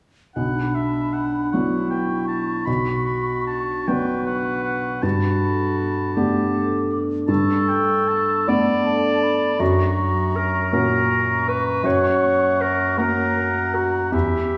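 From 0.4 seconds, a felt-muted upright piano lays down a soft, intimate accompaniment up front while a concert harp rings out fingerpicked arpeggios in the background, opening a moving, bittersweet cinematic passage in B minor in a rubato 6/8 at 52 BPM. Alongside them, a mellow clarinet, a clear classical oboe and a pure, hollow concert flute with vibrato carry second lines as the chords move from Bm through Gadd9 to F#. Wet scoring-stage reverb lends a roomy glow to this fragment of a longer piece, and every part plays on until 14.6 seconds.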